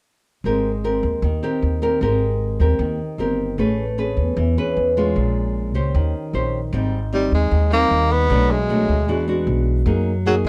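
A dark, lightly reverberant production frames this sunny, sophisticated bossa nova in Ab major at 153 BPM, where a woody, thumpy pizzicato upright bass and a small, fingerpicked nylon-string guitar move through rich chords like Abmaj9 and Bbm7 before a clear tenor saxophone enters up front at 7.1 seconds with a subtoned, vibrato-laced jazz solo in this brief cut from a longer piece.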